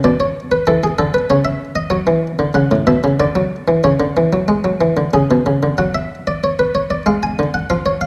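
Classical, baroque-style two-part invention in F# minor at 94 BPM in 3/4, a joyful, lively 8.1-second excerpt cut from a longer piece, played by a solo buff-stop harpsichord of Flemish style whose muted, lute-like pluck sits dry and up front across a range from A2 to Ab5. The harmony moves from E7(no3)/B through C#madd9, F#5 and Dadd9 to C#sus4 and C#5, and the second section, from 5.8 s, returns to F#5 before closing on Ddim. A moderate recital-hall reverb surrounds the instrument, and the production leans dark and warm.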